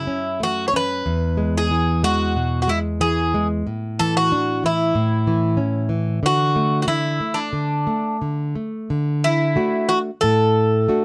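Close, detailed microphones and a light reverb give this short cut from a longer piece an intimate, present sound. It is a fado-style ballad in D major, nostalgic and tender, moving at 92 BPM in 4/4 with a loose rubato feel. A Greek bouzouki carries the melody between D4 and C#5, its metallic double strings, some doubled at the octave, ringing bright and picked up front. Beneath it a nylon-string guitar fingerpicks a classical accompaniment from E2 to F#4, also up front, with a bright tone. The harmony opens on F#m7, passes through E and an Asus4 resolving to A, and settles on a bare D5 before a new section arrives at 8.9 seconds on a full D chord that carries through to the end at 11.0 seconds.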